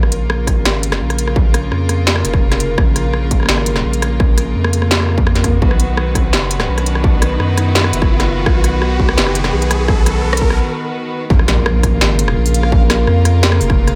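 A heavy, cinematic half-time drum and bass groove at 169 BPM in Bb phrygian pairs a distorted electronic kick with an up-front industrial kit of clanging snare, rim clicks and smooth hi-hats, both in small room reverb, over a thick, saturated sine sub bass. Rich, earthy chamber strings hold bowed chords with light vibrato and sidechain pumping, moving between Bbm and B, while a background riser builds from 3.1 s toward a brief break and an impact lands at the drop at 11.3 s. In this excerpt from a longer piece, a reversed, dreamy granular texture swells in with a soft attack from 12.2 s, adding a bright glow beneath the digital ambience.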